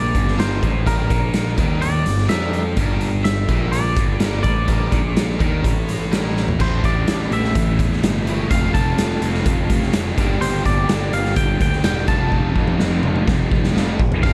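A straight 4/4 pulse at 126 BPM drives this bittersweet, moody indie rock excerpt in G dorian, cut from a longer piece. The raw garage drum kit sits up front with a boomy kick, a medium-tuned snare, hi-hat, toms and crash cymbal, its gritty, saturated sound ringing in a bright stone room that pumps, with drum fills at 6.4 seconds and again from 12.3 seconds. Underneath, a growly fuzz bass with overdrive holds the low end, while a scooped, high-gain guitar plays a distorted riff and a dark, crunchy overdriven guitar adds a second riff in the background from 0.4 seconds, colored by analog chorus and tape echo. On top, a clean, compressed, twangy electric guitar carries the melody through tape echo. The chords move from Gm to Am at 6.6 seconds, then through F and back to Gm before settling on F, all within a dark production with light studio reverb.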